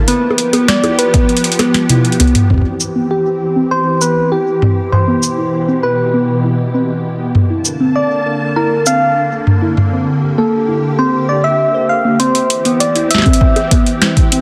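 Dense and heavily limited, this wistful, playful IDM excerpt sits in a moderate, lush hall reverb, with the drums kept up front in a small-room ambience. A booming analog drum machine runs throughout with a dry, tonal snare, metallic hats, bongos, shaker and toms, while a deep electronic kick appears only briefly near the opening and again near the close. Beneath it, a silky vintage string machine holds slow-attack sustained chords through phaser and ensemble chorus, moving from G7 to Cmaj7 and Bbmaj7 before settling on C. A harp-like synth pluck rings out dark, full-bodied arpeggios through chorus and tape echo, and a filter sweep shapes it from 2.5 to 12.2 seconds. Over the top, a round, keys-like FM lead sings a gentle melody with vibrato, chorus and digital delay, and a drum fill at 1.6 seconds marks the turn into the longer middle section.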